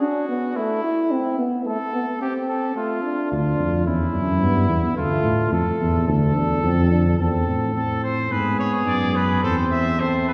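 Heard from further back in a wet concert hall, this contemplative yet driving imitative brass canzona in D minor at 108 BPM, cut from a longer piece, opens with a clear trumpet second line and a soft-attacked, vintage-toned euphonium accompaniment, both with light vibrato; a mellow, punchy tuba bass enters at 3.3 s, and a bright, up-front trumpet melody arrives at 7.8 s over harmony that moves between A minor and D minor chords.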